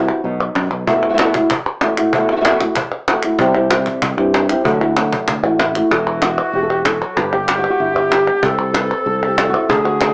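Flamenco at 190 BPM in a straight 4/4, intense and fiery, heard as a short section cut from a longer piece. A dark, boxy flamenco guitar carries the melody up front from the start, its thumb-plucked notes sitting between G2 and B4 with audible finger squeak and a cassette tape coloring. A woody cajon struck with hard hands drives the percussion alongside crisp palmas hand claps, the cajon vintage and band-limited with faint snares, while the claps carry a small-room sound. A growly, punchy fretless electric bass plays briefly at the opening, drops out, and returns at 3.4 seconds for the rest. At 5.9 seconds a breathy, hollow jazz flute enters as a second line, distant and soft in attack with a straight tone and its own cassette tape tint. The harmony moves through chords such as B7sus4, Dadd9 and Esus24, and the whole mix has a home-recorded cassette feel with a small speaker sound and a wet studio reverb.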